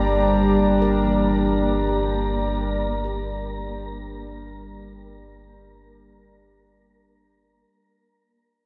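Ambient music in free time and G dorian, tuned to A4 = 443 Hz, this melancholic, reflective fragment rests on a single G minor chord. A smooth, detuned sawtooth pad with chorus holds sustained chords, joined by a warbling, vintage analog drone with pulse-width modulation and chorus, a deep, round sine sub bass up front, and a breathy, wind-like tuned noise texture, all set in a huge, wet reverb. In the background, ringing handpan arpeggios played with the fingertips drift through diffuse ambient delay until 6.9 seconds, as the whole recording fades out over its 7.7 seconds.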